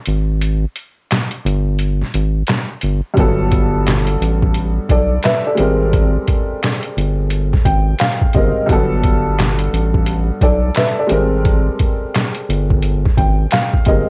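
Nostalgic and warm, this boom-bap hip-hop excerpt moves at 87 BPM in 4/4 with a 16th-note swing. It opens on a break of drums and bass alone, and the kick drops out from 1.8 to 3.2 seconds before the groove settles back in. The sampler-style kit is gritty, compressed and pitched down, with a thumpy kick, a medium-tuned snare, handclaps and hi-hat, all colored by cassette tape. Beneath it, a round analog bass sits deep and sustained in a low register, its square-wave and sine tones wave-folded into an evolving, mellow shape. At 3.1 seconds a worn, woody upright piano enters, slightly detuned and filtered through cassette tape, alternating Gmaj9 and Abmaj9 chords. The dry, home-recorded cassette sound keeps every part close and intimate.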